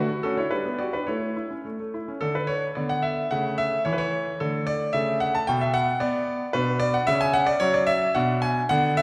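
A clear grand piano carries this short passage alone, playing a graceful, elegant classical-period sonatina in 2/4 with a flexible, rubato feel. The instrument sounds natural and sits up front, spanning the range from B2 to A5 and tuned slightly high, with A4 at 444 Hz. A church or concert hall adds a long, wet reverb of about 1.9 seconds. The opening phrase moves through D, G and A harmonies before a new section begins at 2.2 seconds. That section alternates chordal moments with bare passages and turns toward B minor near the close, ending at 9.0 seconds as a fragment cut from a longer piece.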